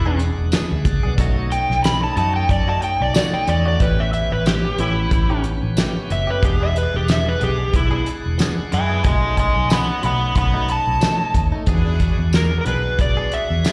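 A dark, overdriven slide guitar solos up front through slapback echo and plate reverb across this swaggering, soulful straight-eighth soul blues excerpt at 92 BPM in E mixolydian, over a shouting tonewheel organ on slow rotary speaker, a round, foam-muted fingered bass, twangy clean picked guitar stabs in the background, and a cloth-damped kit with fat snare, tight kick, hi-hat and tambourine, while a distant, biting string section adds sustained chords from 11.7 to 12.3 seconds, all heard as a live gig through the venue's PA in a recital hall.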